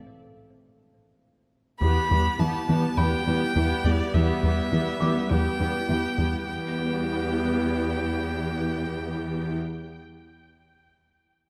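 In a straight 4/4, this brooding, vast cinematic passage opens with a very quiet, felt-muted upright piano playing soft, dark textures alone until a single Em chord arrives at 1.8 seconds. There, a rich, smooth violin melody with tape echo enters over a lush bowed viola section, a warm cello section holding a low E, a punchy, funky analog bass riff and tine-like thumb-piano-like synth arpeggios. A warbling, nostalgic tape-like pad with chorus and phaser joins at 2.6 seconds, and the bass and pluck drop out at 6.4 seconds, leaving the strings and pad to ring in a moderate scoring stage reverb.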